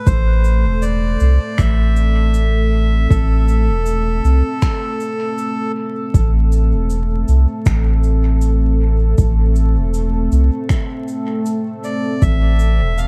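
A reedy, breathy melodica and a deep, moody ambient pad open this hazy ambient dub fragment together, cut from a longer piece in A minor at 79 BPM with a gently swung 4/4 feel. The melodica, close and dry with a nasal edge, carries the melody through dub echo until 5.7 seconds, then returns at 11.8 seconds. Beneath it, the dark pad holds sustained chords on A minor throughout, its vintage, warbling tone softened by chorus and its own reverb. A round, soft sub bass sits up front with a touch of tube saturation, while an overdriven electronic kick drum anchors the pulse. Faint cabasa and finger snaps, filtered and echoed in a big room, drift in the background, and vinyl crackle gives the whole production a dusky, spacious glow.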